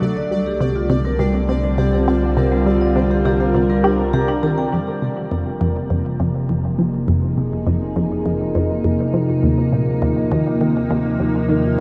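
An evolving, morphing wavetable pad sits up front with sustained, detuned chords bathed in chorus and its own reverb, anchoring this mysterious, expansive stretch of sequencer-driven ambient space music cut from a longer piece. Beneath it a deep, round sub bass holds the low end while a juicy, squelchy blip pluck with phaser and tape echo carries the riff. A metallic, ringing vibraphone with slow motor vibrato plays arpeggios and a bright, pulsing gated texture shimmers overhead through the opening as a filter sweep moves across a synth arpeggio sound, before both fall away by 4.7 seconds, leaving the dark, warm mix awash in huge, wet reverb.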